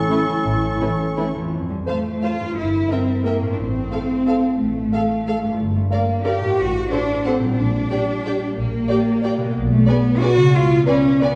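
Classical orchestral excerpt, festive and sweeping in rubato 3/4 at around 157-196 BPM, where oboe, flute, clarinet and bassoon sound together only until about 1.4 s, while a ringing fingerpicked harp keeps up arpeggios throughout beneath a clear, intense violin melody high in the background, a second violin line and violas with expressive portamento, mellow French horn chords, woody double basses and rich cellos up front carrying the bass, all set back in a wet scoring-stage reverb as the harmony moves through diminished chords toward a closing C#7b9.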